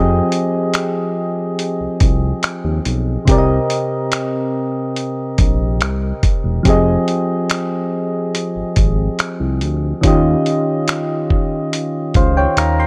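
Soft, round electric-piano-like synth keys with a mellow chorus shimmer and a smooth, dark synth bass open this moody, longing contemporary R&B excerpt together, and a dusty, tape-toned soul sampler-style kit of finger snaps, hi-hat and thumpy kick joins at 0.3 seconds, all moving through Fm9, Cm7 and Eb7 in a dry, gritty, up-front mix.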